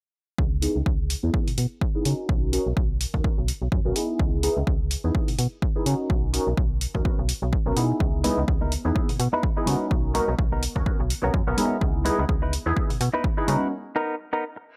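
A filtered disco house groove at 126 BPM in C# dorian opens with a punchy, overdriven kick, a snappy FM slap-like bass with a metallic attack, a mellow chorused sawtooth polysynth comp and an overdriven hi-hat, the bass, comp and hi-hat pumping under a filter sweep through C#m9, Bmaj7 and G#m11/B, before egg shaker and congas slip into the background and a bright, clean, direct-recorded electric guitar riff joins up front at 8.2 seconds, leading into a break where a reverse cymbal sounds at 14.7 seconds, in a sensual, funky mood with little reverb.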